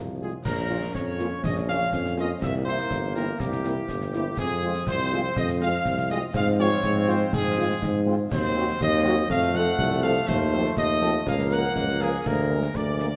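A stern, martial military-style march for wind band in F minor at 122 BPM in 2/4, this excerpt has a mellow, punchy trumpet section up front carrying the melody over a warm, roomy tuba bass, while clear trombone chords and a dark, distant French horn section with light vibrato sit in the background, a close, dry concert snare, bass drum and dark-toned clash cymbals enter at 0.5 seconds, and moderate scoring-stage reverb surrounds the ensemble as the harmony moves from Bbm through Fm to a closing Bb7/D.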